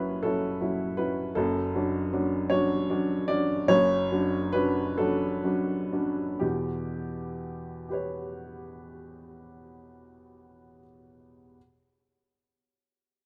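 Neoclassical minimalist piano in E dorian, wistful and reflective, this short excerpt has a solo upright piano, woody, smooth and up front with a vintage character in light reverb, playing in a rubato 6/8 at 41-54 BPM that slows from 0.2 to 6.4 seconds as the harmony moves from F#m7 to Dmaj7/F# before settling on Em6 at 6.4 seconds, with the instrument ranging from F#1 to D5 and sounding until 11.6 seconds.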